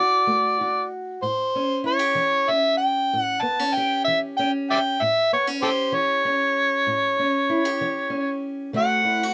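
A slow 12/8 pulse carries this short cut from a longer acoustic country blues, its swaggering, laid-back mood set by just two players. An amplified, overdriven harmonica sits up front and takes the melody as a jazz-style solo, its gritty tone colored by light vibrato, scooped notes and percussive tongue slaps. Beneath it, a parlour-style steel-string acoustic guitar is fingerpicked in a lower register, sounding dark and boxy and sitting well behind the harmonica in the balance. The harmony moves from D to A7 at 1.2 seconds, where it rests for most of the passage, before turning to D7 at 8.8 seconds. A modest booth ambience keeps the sound close and dry.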